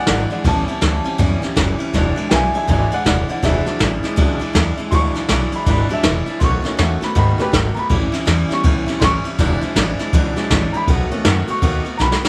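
A swung eighth-note feel in 4/4 drives this upbeat, rowdy rockabilly clip, cut from a longer piece. The jazz drum kit is played with brushes and sits up front in a roomy small-room sound, with dark cymbals, a medium-tuned snare and a boomy kick, and it closes on a drum fill at 12.0 seconds. Underneath, the pizzicato upright bass has a thumpy, gut-string tone, while a bright, full-bodied steel-string acoustic guitar picks out the accompaniment, its finger squeak audible. A warm, woody upright piano takes the solo for the whole passage, from 0.0 to 12.3 seconds, riding over dominant-seventh changes on A7, E7 and B7. Light reverb ties the parts together.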